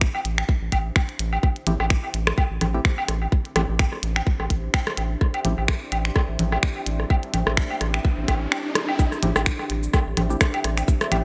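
Quirky and cool, this excerpt of swung minimal techno at 127 BPM in A minor rides a tight, layered electronic kick and a round, wave-folded analog bass pumping under the sidechain, with clicky hats, finger snaps and shaker from a minimal click kit, small-room electronic woodblock, congas and rim click up front, and a deep, moody, detuned pad with chorus and reverb sustained over an Am7 chord beneath hollow, chorused organ-like stabs that enter at 1.7 s, before a background riser at 7.2 s leads into a drop at 9.0 s, all set in bright 1980s-style digital production.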